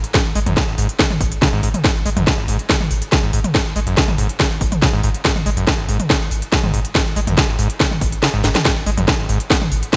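Industrial and hypnotic, this driving peak-time techno passage pairs a heavy, overdriven electronic kick and an up-front, layered techno kit of cracking snare, smooth hi-hats and toms with a deep, round sine sub bass that pumps under the sidechain, while a screaming, squelchy sawtooth acid line with resonant filter sweeps, distortion, chorus and delay snarls through the mix; the kick drops out from 8.2 to 8.7 seconds around a drum fill at 8.4 seconds, and light digital reverb gives the piece a bright 1980s-style sheen.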